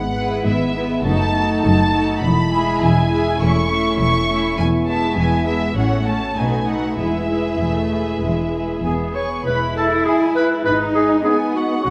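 Cheerful and spirited, this brief cut from a quick classical-period movement for symphony orchestra sets a muted violin section on the melody over mellow French horn chords, with muted cellos and double basses supplying the bass and a second muted violin line and violas filling in the accompaniment. The strings play con sordino with a dark, veiled tone and vibrato, and at 8.8 s a clear, distant-sounding clarinet enters up front with its own second line. A generous concert hall reverb wraps the ensemble in a wet, spacious ambience.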